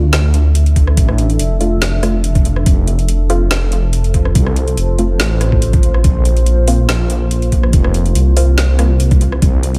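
Set in a digital ambience, this heavy, meditative deep dubstep excerpt moves at 142 BPM in a swung half-time feel, with a rumbling, detuned saw bass up front beneath a moody chorused pad, muted phaser-washed dub chord stabs with echo in the background, a garage kit of woody snare, rim click and metallic, overdriven hats, and a gritty, pitched-down kick entering at 0.8 s, all over chords moving from Dm to F to Bbsus2.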